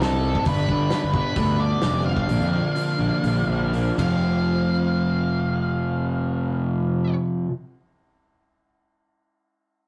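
A growly, overdriven fingered bass sits up front in this restless, anthemic quiet-loud alternative rock excerpt in F major, moving in 4/4 with a straight feel somewhere between 114 and 136 BPM. Beside it, a sludgy distorted guitar grinds out a dark riff, while an octave-fuzz lead guitar carries the melody between A4 and F5. Tucked quietly behind them, an electric guitar through a small old amp plays very quiet, slightly broken-up arpeggios. A loose indie drum kit with dark cymbals, a medium-tuned snare and a tight kick works hi-hat, ride, snare and kick until about 4.1 seconds, as the tempo slows from 0.5 to 4.2 seconds over chords moving from G to Bb and landing on F at 4.0 seconds. The rough rehearsal-room sound carries saturation and a moderate studio reverb, and the piece is cut from a longer work.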